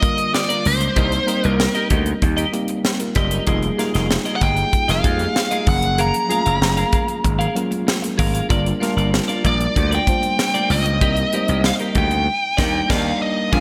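Polished 1980s jazz-funk pop at 96 BPM in a straight 4/4, this slick, nocturnal passage is cut from a longer piece and glides through minor-seventh harmony from Gm7 and Cm7 to a lush Fm11 and Gbmaj9. A nasal lead guitar with a parked wah carries the melody up front, its overdriven, picked tone sitting between C5 and Bb5, while a worn, slightly out-of-tune tine electric piano with analog chorus fills in the accompaniment. A twangy, compressed clean electric guitar, also chorused, plays a bright picked riff. A crisp fusion drum kit with a high-tuned snare, punchy kick and sparkling cymbals drives the groove from the start, joined at 0.7 s by a growly, overdriven slap bass, and very quiet, ringing vintage congas add colour from 3.5 s to 12.1 s. A band accent lands at 12.3 s on an Ebmaj7, and a reedy, gut-string studio string section with light vibrato enters for sustained chords at the very last moment, all set in a moderate lush hall reverb with bright digital-era production.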